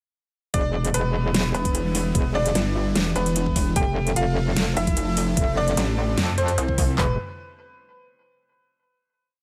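At 0.5 s, this aggressive, chaotic heavy wobble dubstep piece drops straight into its half-time groove. A bright concert grand piano repeats an octave riff through tape echo, and a lush supersaw pad holds Em7 and F chords in the background with phaser and sidechain pumping, while a metallic, overdriven FM wobble bass sits up front over a layered electronic kit of knocking kick, toms, claps, hi-hats and a huge snare. At 1.5 s a detuned, pulsing pluck wobble bass joins, answering the first bass as both change their wobble speed, with the piano's worn, intimate tone and audible action noise sounding present in the dry mix before the drop gives way at 7.0 s to a final Em7 chord.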